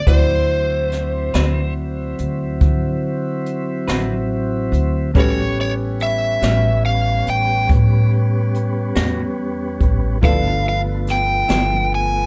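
An overdriven slide guitar, played with fingerpicks, carries the melody up front through plate reverb in this swaggering, rollicking slow blues fragment in 12/8. Beneath it sit a thumpy, woody gut-string upright bass and distant, roomy brushed drums with a boomy kick and high-tuned snare. Smooth tonewheel organ chords bring key click and a slow rotary speaker, a vintage upright piano sits in the background, and a clean, picked electric guitar with tremolo enters at 1.3 s.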